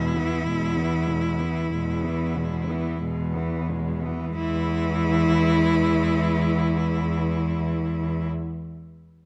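Serene and warm, this lyrical classical passage for four bowed cellos moves in a free rubato, slowing over its first 4.4 seconds. Up front, a rich, focused cello sings the melody with vibrato above a bass cello with a soft attack and expressive portamento. Further back, a smooth, even cello holds a second line and a clear, intense one supplies the accompaniment, all within a moderate scoring-stage reverb in this brief excerpt.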